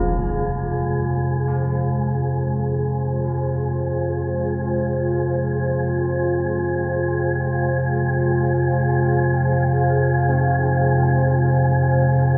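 Awash in wet cathedral reverb, this cavernous, desolate dark ambient drone in free time, tuned to A4 = 443 Hz, rests on an Abadd9 chord: an ominous, rumbling deep drone sits up front, a moody, detuned pad with chorus enters at 0.9 s, a breathy, wind-like tuned noise texture hovers throughout, and old church bells ring out mellow, clangorous arpeggios through tape echo.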